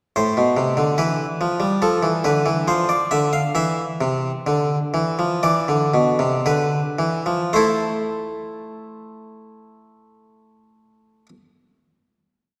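A bright, plucked Italian-style harpsichord on one set of strings sits up front, spinning two-part imitative counterpoint across a range from A2 to F5 in this complete, solemn yet driving baroque-style invention in A minor. In straight 4/4 between 54 and 73 BPM, the piece gradually slows from 0.2 to 9.8 seconds as the harmony moves from a rootless A minor through D minor, C add 9 and a bare E fifth. The exposition settles onto a final A minor chord at 7.5 seconds, which rings in the dark production and the wet concert-hall reverb until the harpsichord stops at 11.3 seconds.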